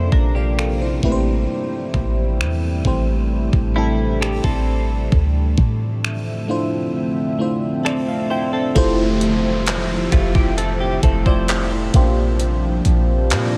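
Late-night and longing, this short excerpt of contemporary R&B moves at a slow, straight pulse, its dreamy mix soaked in a huge ambient reverb. A lush, detuned FM electric piano with a soft pad layer carries the accompaniment, colored by chorus and phaser, while a deep, warbling ambient pad sustains dark, vintage chords beneath it. A bright, direct-recorded clean electric guitar picks compressed arpeggios through analog chorus and tape echo until 11.9 seconds, and a boomy, sine-toned 808-style bass sits up front with fast-attack, decaying notes. The gated 80s drum machine brings finger snaps, handclaps, hi-hat and a thumpy kick with gated reverb. The kick drops out from 6.9 to 8.8 seconds, and the electric piano plays a fill from 7.4 seconds. At 8.8 seconds the harmony opens onto a major ninth chord and a downlifter slips in, sitting in the background.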